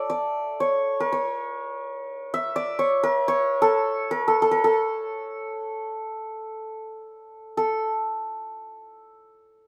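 The recording sits in a moderate studio reverb, giving the short excerpt a sense of space around a single instrument placed up front. It is a Persian modal piece in free time, drawn from a longer work and set in dastgah homayun on A. A solo acoustic santur carries everything, its hammered strings sounding bright, shimmering and ringing across a compact span from A4 to E5. The mood is warm and passionate, unfolding unmetered. A new section begins at 7.6 seconds, and the santur sounds until 7.9 seconds.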